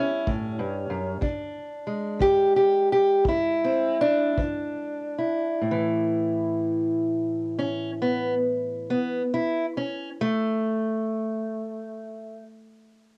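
Laid-back and rollicking, this acoustic country blues moves in a straight 12/8 at roughly 46-64 beats per minute, with the tuning set to A4 = 441 Hz. A fingerpicked steel-string parlour guitar carries the melody from start to finish, its dark, boxy tone sitting up front and ranging from E2 to G4. A distant kick drum, played with brushes and carrying a punchy yet rolled-off character from a roomy studio space, sits beneath the guitar from 0.3 to 4.6 seconds and has the grain of cassette tape. The opening section slows as it moves from A7 to E7, and a second section begins at 5.6 seconds on an A5 chord. The home cassette recording is dry, capturing a fragment cut from a longer performance.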